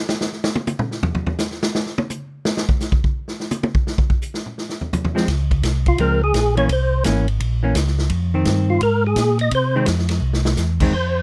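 Late-night and bluesy, this soul jazz organ trio fragment swings in four, cut from a longer piece. A vintage acoustic drum kit opens alone with a drum solo, its dark cymbals, punchy kick and medium-tuned snare sounding natural and up front in a studio room. The hollow-body electric guitar enters at 5.1 seconds with clean, picked accompaniment in a dusky register, and a mellow tonewheel organ soon joins on bass, round and shadowy with chorus vibrato and a slow rotary speaker. From 5.9 seconds a percussive tonewheel organ carries the melody, fat and clean with third harmonic percussion, audible key click, chorus vibrato and its own slow rotary swirl. A drum fill arrives at 10.2 seconds, and the whole take is dry and closely miked, with crisp detail.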